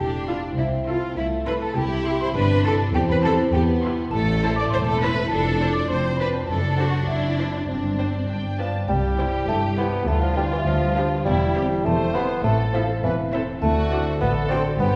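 Magical and quirky, this whimsical cinematic cue, cut from a longer piece, trips along at 102 BPM in a straight 2/4 and settles into C major from 4.1 s after opening on A minor harmony. A mellow, dry xylophone played with soft rubber mallets carries the tune over bright, ringing harp arpeggios, while a violin section adds a second melody from 0.3 s with a soft attack, vibrato and expressive portamento. Beneath them, a smooth, even violin section weaves a second line, a very quiet, focused viola section fills in the accompaniment, and bowed cellos and double basses anchor the bass, the cellos rich with portamento and vibrato. At 8.6 s a clear solo bassoon steps up front with light vibrato in a classical style, just as the harmony turns toward a brighter C and G7 passage. The whole ensemble is heard from further back in a wet scoring-stage reverb, giving the cue a spacious, storybook glow.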